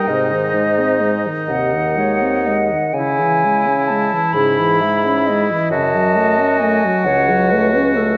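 A silver concert flute carries the melody in its upper register, its pure metal tone shaded with vibrato and soft attacks, before it falls silent at 7.5 seconds while the others play on to the end. This brief cut from a slow, romantic classical movement for wind quintet moves in a rubato 6/8 at around 41-45 beats per minute, counted in dotted quarters, and sits in C# minor with a yearning, elegiac mood. Beneath the flute, a clear oboe with light vibrato traces a second line low in its range, while a mellow clarinet with soft attacks and a mellow French horn with a smooth top fill out the accompaniment. A mellow bassoon anchors the bass from 0.1 seconds, its light vibrato adding gentle movement. The harmony passes from G# to C#m to F#m, and a moderate concert hall reverb lends the ensemble a spacious, resonant setting.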